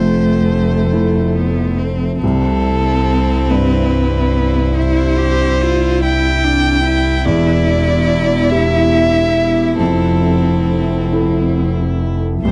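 Tender and hopeful, this slow, rubato neoclassical passage in 6/8 at 47 BPM sets a warm, vibrato-rich solo violin melody over a focused cello second line, a smooth viola in the background, a felt-muted upright piano with audible action noise, a glassy, ethereal FM pad with chorus and built-in reverb sitting very quietly beneath, and a bowed double bass up front, all captured in a dry, close 1970s-style small-room recording as the harmony moves from Fmaj7 through Cmaj7 and Em7 back to Fmaj7.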